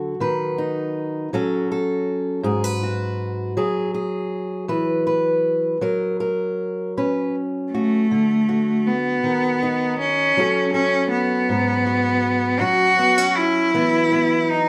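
Intimate and tender, this slow acoustic folk-pop ballad moves in a lilting 6/8 at 53 BPM, counted in dotted quarters with a straight feel. A fingerpicked steel-string acoustic guitar opens alone, up front and warm, with a concert-instrument fullness as it works through chords such as B/D#, F#m, G#m7 and Esus2. At 7.7 seconds a single bowed cello enters with the melody, bright and biting, its light vibrato giving the line an intense edge. The cello sits a little louder than the guitar, and although it is placed up front, it carries a slightly distant quality. A moderate large-studio reverb adds a sense of space. The passage shifts to a new section around 8.1 seconds, where a D chord leads back into the earlier progression, and the clip is cut from a longer piece.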